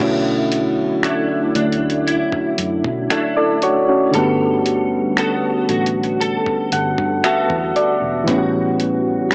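Moody and late-night, this short contemporary R&B fragment pairs soft, warbling electric-piano-like synth keys with chorus against a clean, direct-recorded electric guitar playing arpeggios through ensemble chorus and tape echo, over a dark, foam-muted fingered bass and a gritty, sampler-style soul kit with a thumpy kick, finger snaps, hi-hat and crash, as the keys add a fill at 6.2 seconds and chords drift from Bm11 through Gmaj9 to A13, all with light reverb and the small-speaker feel of a cassette home recording.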